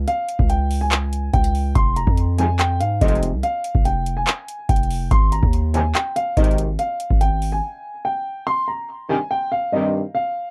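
A distorted, saturated 808-style bass opens this menacing, eerie trap excerpt at 143 BPM in a half-time feel in C phrygian, joined at once by a dark, boxy concert grand piano melody and a booming analog drum machine with deep kick, metallic hats and handclaps, while a distant, roomy brass ensemble adds low classical-style stabs from 2.4 seconds, and after a break at 7.6 seconds the piano and brass carry on alone in a dry, dark mix over chords moving from Db through Fm and Ab5 to C5.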